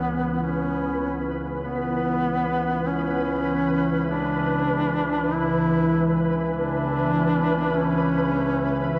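Drenched in a cavernous cathedral reverb with a cassette-tape patina, this nine-second fragment of a longer dark ambient drone piece feels ominous and vast, resting on an E5 chord. Up front, a calm, detuned organ-like drone built from sine tones with ensemble chorus and its own reverb sustains low beneath a filter sweep, while a grainy, flickering triangle texture hovers higher and quieter in the haze. Over them, a close-miked solo duduk sings a warm folk-style melody with vibrato and scooped notes, trailed by a diffuse ambient delay.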